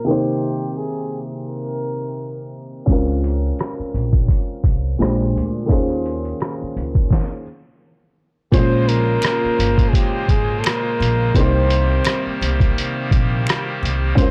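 A dry, gritty small-room recording with a hazy low-pass filter frames this nostalgic lo-fi hip hop excerpt, which opens on a dark, worn upright piano with audible action noise and a breathy, vibrato-touched flugelhorn melody under a filter sweep. At 2.9 seconds a muffled, pitched-down sampler-style kit with a thumpy kick and a growly pizzicato upright bass carrying tube saturation enter together, and the swung groove runs until a stop at 7.1 seconds. From 8.5 seconds the jazz-style flugelhorn returns over sustained chords from a hollow clarinet stop on pipe organ with chiff and tremulant, and at 9.2 seconds close finger snaps add a human touch.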